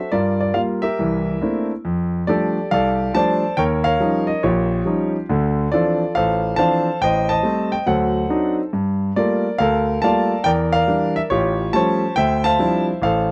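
Solo jazz piano in F major, swinging and playful at 139 BPM in 4/4, with a moderate swing on the eighth notes. A clear concert grand carries the whole 13.3-second passage cut from a longer piece, ranging from A1 up to A5 with a deep bass and a natural tone that sits up front. After a brief opening on Gm7 and C13, the harmony settles on F69 at 1.8 seconds and moves through rich extended chords such as Eb9, Dm9 and Gm9. Minor seven flat five chords leading into altered dominants, D7b9 and later A7alt, add tension before the passage comes to rest on Dm11. The sound is a dry, close studio recording in a 1970s style, with only light reverb around the piano.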